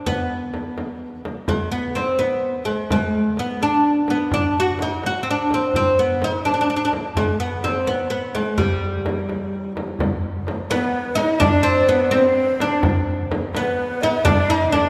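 A steady 6/8 pulse at 84 beats per minute, counted in dotted quarters and played straight, carries this stately Persian modal ensemble piece, heard as a cut from a longer work. A bright, woody oud leads the melody throughout, its plectrum-plucked double strings sitting deep and up front, while a large acoustic frame drum supplies the foundation from the start. A tight tombak joins at 4.3 seconds, played with soft hands and kept distant in the background, and a drum fill at 9.5 seconds ushers in a new passage. At 10.7 seconds a breathy, mellow ney and a rich bowed cello enter as second lines: the end-blown reed cane sounds unsteady and faraway with a trembling vibrato, while the solo cello sings expressively with soft attacks and gliding portamento. A wet church reverb lasting 2.7 seconds gives the whole a warm, spacious sense of a large hall.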